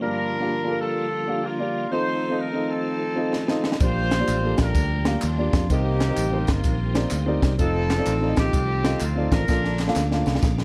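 Soulful and reverent, this uptempo gospel passage in Bb major moves at 127 BPM in 4/4 with a swung eighth-note feel, cut from a longer piece. A mellow, distant horn section carries the melody from the start, tight and roomy, over a dark, woody upright piano and a tonewheel organ holding sustained chords in the background, its piping, scooped tone coloured by key click, chorus vibrato and a slow rotary speaker. At 3.3 seconds a crisp fusion kit enters with a drum fill, then settles in with a punchy kick, high-tuned snare and bright ride cymbal, its small-room sound pumping, saturated and gritty. At 3.8 seconds a round, up-front fingered electric bass joins, along with a faint layer of tube shaker, tambourine and compressed group handclaps. The chords move through Gm7, F7, Bb6, Cm7 and F7 before landing on Bbmaj7 as another drum fill closes the excerpt at 10.6 seconds, all within a small room ambience.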